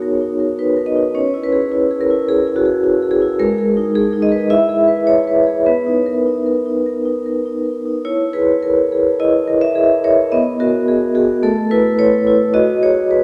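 A solo vibraphone played with medium hard mallets carries this flowing, contemporary classical piece, its dark, metallic tone ringing smoothly with a medium motor vibrato and sitting up front despite a distant listening position in a wet church reverb. In a rubato 4/4, the harmony drifts from Bmaj9 through C#m7, G#madd9 and E before settling on Bmaj7. A new passage at 8.1 seconds moves through E, B5 and Aadd9 to close on F#sus24, giving this fragment of a longer work a warm glow.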